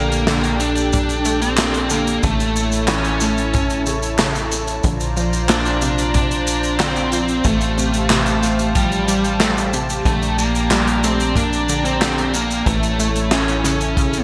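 A straight 4/4 groove drives this cinematic synthwave excerpt. An airy, polished acoustic kit of medium-tuned snare, handclaps, hi-hat and shaker sits up front in gated reverb, joined by a punchy kick from 0.9 s and a tight, nasal sawtooth sequencer bass, while a smooth, detuned analog pad holds sustained chords with chorus and sidechain pumping and a round analog pluck in the background spins arpeggios through chorus and delay over the chords Gmadd9/Bb, A, Bbadd9 and Fadd9/A. Meanwhile, a biting, overdriven electric guitar picks out the melody with delay, set in a lush hall reverb and bright 1980s-style digital production.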